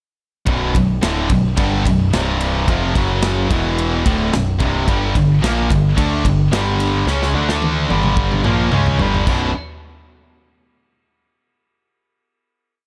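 Captured in a small room, this dark, relentless heavy metal piece sets three bright, picked power-chord guitars (one overdriven, one distorted, and a very quiet double-tracked high-gain layer) behind an up-front, growling overdriven bass that drives eighth notes doubling the riff, while an acoustic kit with a medium-tuned snare and tight kick plays a metal drive groove, rolling into a drum fill at 7.1 seconds before the piece lands on a final chord at 9.3 seconds.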